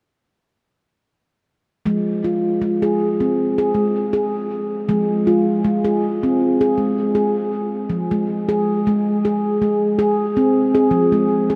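Gently swung sixteenths at 80 BPM in 4/4 carry this meditative world piece in F minor pentatonic, cut from a longer work, where a mellow, ringing nitrided-steel handpan played with soft fingertips sits up front and rolls out arpeggios over an Fm chord from 1.9 s, moving into a second passage at 7.9 s before stopping at 11.6 s, its tones trailed by a diffuse ambient delay and bathed in a huge, 8.6-second reverb that sets it in a vast, echoing space.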